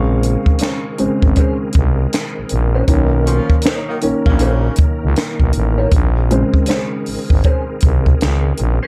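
A slow, swung sixteenth-note groove in 4/4 sets an introspective, sultry neo-soul and R&B mood. A compact cocktail drum kit sits up front with finger snaps, hi-hat, a punchy kick and a high-tuned snare, all dry and natural. A growling, thick FM bass with a fast attack holds down the low end just as prominently. The woody upright piano carries a solo across the whole excerpt, while a reedy, bright tonewheel organ sustains chords in the background, its fast rotary speaker, chorus vibrato and key click adding shimmer. From 0.6 seconds an electric guitar through a small old amp plays a second line, slightly broken-up, picked and compressed, colored by wah and analog chorus, and a tight horn section with octave doubling and light vibrato punches in with pop-style stabs from 3.3 to 4.8 seconds. Light reverb and a dark, warm production wrap the piece as the harmony moves from Bbm9 to Bmaj9 and back.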